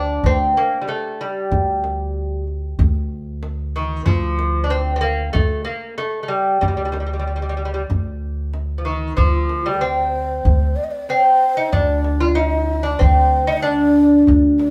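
Longing and soulful, this fragment of a Persian modal ensemble piece in D dastgah shur, tuned to A4 = 437 Hz, moves at a straight 94 BPM in 4/4. A bright, delicate, fingerpicked lute with nylon double strings carries the up-front melody over a woody pizzicato upright bass holding a low D and a deep tombak played with hard hands in the background, until a breathy, unsteady, close-miked low ney with vibrato enters at 9.2 seconds as a second line, all captured live in one room with a moderate stone reverb.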